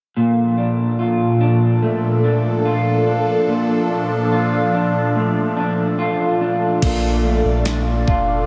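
A swirling, detuned analog pad holds a Bbmaj7 chord from 0.2 s, phased and chorused, beside a dark, slightly broken-up electric guitar playing fingered arpeggios through lush chorus and tape echo, both up front in this blissful, dreamy dream pop excerpt. At 6.8 s a deep, thick saturated sub bass and a clean 12-bit digital drum machine join, the drums bringing a thumpy kick, a medium-tuned snare, hi-hat and crash cymbal. The mix is soaked in a cathedral reverb with an RT60 of 6.0 s.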